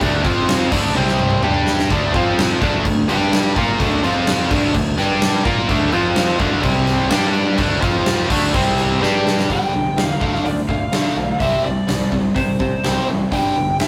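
Hard rock in D minor at 126 BPM, aggressive and heavy, this short cut from a longer piece drives along in a straight 4/4. Two double-tracked, picked guitars carry the riff from the start, a sludgy overdriven part sitting up front and a compressed, distorted one that drops out at 9.5 seconds, both moving through power chords on D, F, C and G with the odd D minor chord. Beneath them a growly, punchy picked bass sits in the background, while a huge arena drum kit with a fat snare, punchy kick and bright cymbals plays up front, adding fills at 1.0 and 9.0 seconds. At 9.5 seconds the music shifts to a new section built on G, D minor and C, and a lo-fi lead guitar through a small cranked amp enters with an overdriven melody in a high register. The whole has a rough rehearsal-room character with warm saturation and moderate studio reverb.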